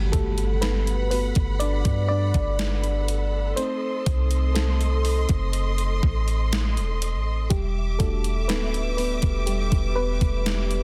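A straight, unhurried 4/4 groove from a crunchy, overdriven 12-bit drum machine, with a thumpy kick, snare and hi-hat, enters at 0.1 seconds over a deep, boomy sine 808 bass, giving this dreamy, smooth contemporary R&B piece a slow, up-front pulse. A round, warbling FM electric piano with a chorus shimmer is featured throughout, while a lush bowed string section adds sustained chords with vibrato, portamento and sidechain pumping, and a very quiet electronic impact sounds until 3.6 seconds. The harmony moves from Gmaj9 to Adim7 to Em7 in a dry, dense and heavily limited modern mix.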